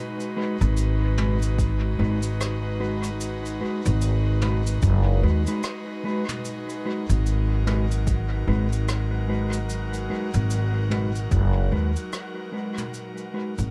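A woody, growly upright bass sits up front, its pizzicato steel strings thickened by tube saturation and anchoring this deep, hazy ambient dub passage cut from a longer piece. Around it, an airy, breathy pad holds sustained chords through a soft chorus, while a mellow electric guitar adds dark, clean, fingered stabs trailed by dub echo. A jazz brush drum kit with cabasa, rim click and toms sounds distant and roomy, also soaked in dub echo, and an overdriven electronic kick drum enters at 1.6 seconds and stays in the background until 11.5 seconds. From 7.2 seconds a wind-like tuned noise texture drifts in beneath everything else, carrying its own reverb. The swung, unhurried groove sits in a small room ambience with an echo-heavy mix, and the passage fades out over its final seconds.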